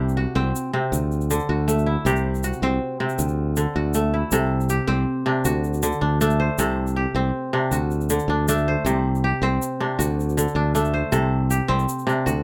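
Close, detailed microphones and light reverb frame this joyful, hypnotic fragment of West African string and xylophone music in 12/8 at 106 BPM, set in C lydian and cut from a longer piece. An up-front kora plays ringing, crisp fingerpicked arpeggios between C3 and C5, while a growly, direct fingered electric bass sits beside it in the low register and a grainy egg shaker adds close, dry texture from 0.1 seconds. The harmony rocks steadily between C and D, with a change of section at 4.3 seconds.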